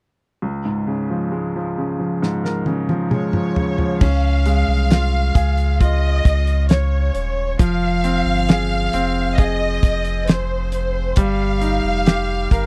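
A straight 4/4 pop ballad, longing and melancholic, opens at 0.4 seconds with a bright baby grand piano, its audible action noise and long sustain sitting intimately up front, before a damped 70s drum kit with dark cymbals, a fat snare and a tight kick enters with a fill at 2.2 seconds. A lush, bowed violin section carries the melody with smooth vibrato, and a round, deep sub bass joins at 4.0 seconds as the harmony moves through Db, Fm7 and Eb. The dry, close 1970s-style studio sound keeps every part near the listener in this excerpt cut from a longer piece.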